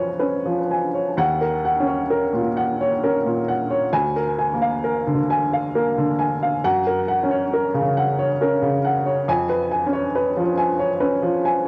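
Intimate and wistful, this brief fragment of a longer neoclassical minimalist piano piece drifts in an unhurried, rubato 3/4 as a solo upright piano, woody and boxy with short sustain and placed up front, moves through a gentle chord cycle after its opening moment at 1.2 seconds, its home-recorded cassette tone softened by analog delay and a moderate studio reverb.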